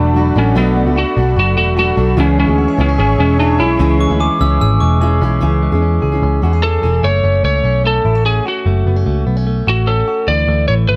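A twangy, slightly broken-up lead guitar carries the melody in this wistful, bittersweet indie pop excerpt in F# minor at 148 BPM, over a round, foam-muted electric bass, bright clean electric guitar arpeggios, woody fingerpicked acoustic guitar until 7.0 seconds, and a mellow detuned pad with chorus in the background, while a bell-like glockenspiel adds a brief second line from 4.0 seconds, all in light reverb.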